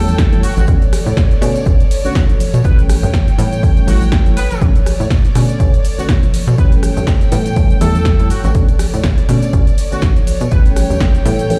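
An up-front, tape-warm electronic kick drives this nostalgic, funky filtered disco house cut at 122 BPM in B minor, with a 56% swing on the 16ths and sidechain pumping on every part save the kick. A plucky sawtooth-and-square analog bass, a reedy, worn, slightly out-of-tune electric piano with overdrive, phaser and 12-bit sampler grit, and dark, bowed sul tasto strings circle between A7 and Bm9. Above them, a clear horn section with a smooth top carries the melody through a delay, while a punchy analog drum machine's hats, rim click, shaker and snare join bright, hard-handed tambourine and congas that sit in the background, all heard on a big sound system in a bare room.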